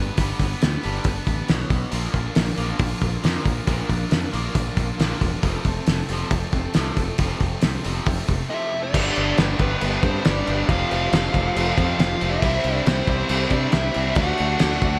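Classic rock with a swaggering, driving feel, cut from a longer piece: two bright, picked guitars, one distorted and one overdriven on a semi-hollow body, sit in the background playing riffs with slapback echo over a growling, overdriven fingered bass and an up-front, cloth-damped drum kit whose muffled, fat snare and dark cymbals sound gritty and lo-fi. A very quiet, flute-like tonewheel organ adds sustained chords with key click and slow rotary from 1.9 seconds. At 8.5 seconds a compressed fuzz lead guitar takes the melody with a very quiet second line from a small cranked amp, soon joined by a woody upright piano, a shimmering fingerpicked twelve-string acoustic and a double-tracked distorted guitar riff, all set in a lush hall reverb with a big arena sound.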